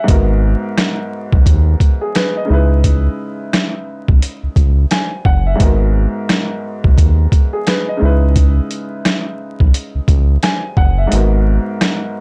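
A deep, round analog bass with an evolving sawtooth-and-sine tone and a ring-modulated edge sits up front in this dark, reflective boom-bap hip-hop excerpt, sharing the foreground with a compressed, pitched-down, muffled sampler-style kit of thumpy kick, medium-tuned snare, rim click and hi-hat in a swung groove. Behind them a natural-sounding baby grand piano, filtered at both ends, moves between G#m7 and C#m7 chords under vinyl crackle in a dry, dusky mix. The kick falls silent at 11.1 seconds for the closing moment.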